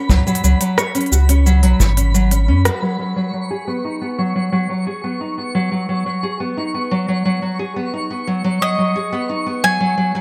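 A fingerpicked nylon-string guitar, gritty with 12-bit sampler crunch, low-pass filtering and digital delay, carries this intimate, autumnal folktronica piece at 88 BPM in G# minor over a faint, sparkling granular shimmer, while a round sine sub bass, a dark brushed kick and a crisp, tape-warm electronic kit of hi-hat, rim click and shaker all drop away by 2.8 seconds, and a bright, picked bowl-back mandolin with digital delay enters at 8.6 seconds.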